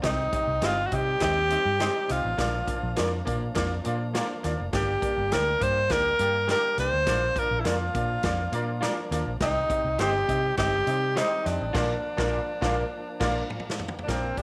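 Uplifting, danceable 1960s-style soul at 102 BPM in Bb major, where a breathy, whispered tenor saxophone with scooped notes carries the melody up front over clear, short-sustain baby grand piano, a round, foam-muted fingered electric bass, a roomy and distant big-band drum kit with dark cymbals and punchy kick, slightly broken-up lo-fi electric guitar stabs with ensemble chorus in the background, a very quiet lightly overdriven tonewheel organ with key click, and a mellow horn section entering at 1.5 s with an octave-doubled second line, all in light studio reverb, before a band accent at 11.7 s and a drum fill at 12.9 s close this cut from a longer piece.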